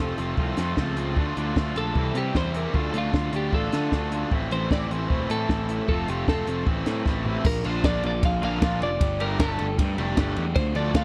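A straight 4/4 groove sets this cool, moody indie rock fragment in motion, with a compact cocktail drum kit entering at 0.2 seconds: a high-tuned snare, punchy kick, hi-hat, ride, crash and toms, dark and smooth with a rolled-off top, sitting up front. A fuzz-drenched picked bass, also forward in the mix, adds a gritty, direct and amped low end beneath three electric guitars. A cranked stack guitar plays a bright overdriven riff coloured by lush chorus and tape echo. A raw garage guitar adds a second overdriven riff from further back. Above them, a clean, compressed twelve-string electric carries the bright melody through tape echo. A drum fill at 7.1 seconds leads into a new section at 7.5 seconds, where the chords move from minor-leaning changes to Bb and Gsus2, all captured in a dry, close 1970s-style studio sound with little reverb.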